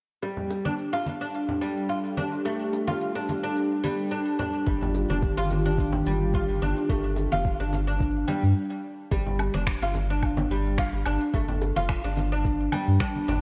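Worn, warbling cassette tape with drifting pitch and light reverb colours this earthy organic downtempo piece at 108 BPM, its sixteenths lightly swung. A woody, plectrum-plucked oud plays arpeggios up front through a low-pass filter, delay and shimmer reverb, over a smooth, detuned sawtooth pad of sustained chords with chorus and pumping, while overdriven electronic shaker, woodblock and finger snaps mix with ringing, hard-hand bongos and congas. At 4.7 seconds a round sine sub bass with transformer saturation and a soft, overdriven electronic kick join, the pad drops out at 8.5 seconds, and after a brief stop the music moves into its second section at 9.1 seconds.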